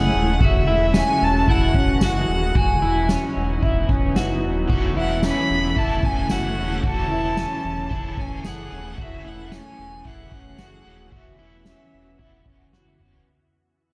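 Heard as if played through a big sound system in a bare room, with light reverb and a large studio reverb, this ethereal, floating dream pop excerpt moves at 112 BPM in a straight 4/4, fading out across its length over chords such as F#m9 and C#m11/E. A distant, smooth bowed violin carries the melody through tape echo, above a shimmering, granular pad with octave-up shimmer, a slightly broken-up, twangy electric guitar playing arpeggios through analog chorus and tape echo, and a deep sine sub bass with octave. A soft-mallet drum kit with a boomy kick, ride, snare, tambourine and toms keeps the pulse and closes with a fill at 12.7 s, while a bright, overdriven semi-hollow guitar with harmonic tremolo and ensemble chorus slips into the background at 4.7 s.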